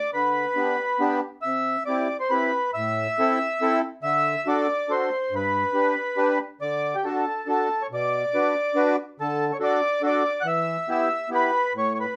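Festive and bouncy, this short alpine folk excerpt in 3/4, cut from a longer piece, sets a mellow, reedy accordion melody with a full, tone-chamber richness up front over a sweet, dark second accordion whose light tremolo tuning adds a smooth shimmer to the chords, moving from G major to D major at 6.6 seconds in a wet studio room.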